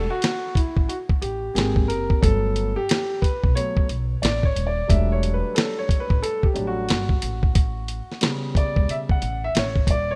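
A dark, mellow baby grand piano takes the solo up front over Emadd9, G#maj9, Gmaj9, Em11 and A7 chords in this cool, nocturnal jazz-hop fragment at 90 BPM with a 16th-note swing in E dorian, backed by a woody pizzicato upright bass and a gritty, compressed sampler-style drum kit with a thumpy kick and fat snare that enters at 0.2 seconds, all set in studio reverb with the rough feel of a home demo mix.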